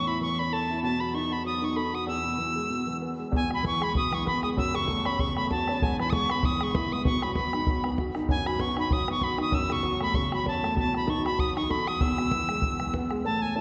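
This lively Celtic reel, heard as an excerpt from a longer piece, sits in a wet church reverb, yet the wooden whistle stays close and up front, its crisp, chiffy attack and vibrato carrying a bright, rollicking melody in E major at 194 BPM with a swung lilt. Beneath it, an upright piano with a woody, slightly detuned tone and short sustain plays the accompaniment through changes such as B7, F#m and E, while a single bowed cello holds a gut-string drone on E2 in the background. At 3.3 seconds a boomy, dry bodhran enters as the percussion and keeps the rhythm going.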